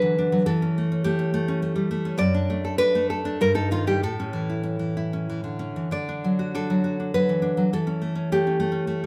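The recording sits in a moderately large studio with a reverb tail of 1.2 seconds, giving the close, up-front guitar a natural halo of space. This is a romantic piece for solo classical guitar in D major and 3/4 time, moving with a rubato feel somewhere between 93 and 106 BPM across a brief 9.1-second cut from a longer work. The mood is tender and warm, carried entirely by a fingerpicked nylon-string guitar whose fresh strings sound bright and full-bodied, reaching from F#2 up to D5. The harmony opens on A7/E at 0.5 seconds, settles onto D/F# at 2.2 seconds, and takes a striking turn through Eb/G before returning to A and D. The passage closes back on A7/E, leaving the phrase poised as if it continues beyond the cut.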